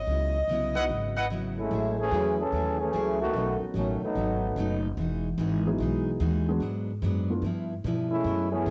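A clear trombone section with light vibrato takes the lead from 1.7 s in this dramatic, sultry swing jazz excerpt, after a brief mellow saxophone section melody and tight trumpet section stabs open it, over a woody, thumpy pizzicato upright bass on gut strings, a full-bodied picked jumbo acoustic guitar and a concert grand piano with deep bass and short sustain set in the background, all heard through moderate spring reverb on a home cassette recording.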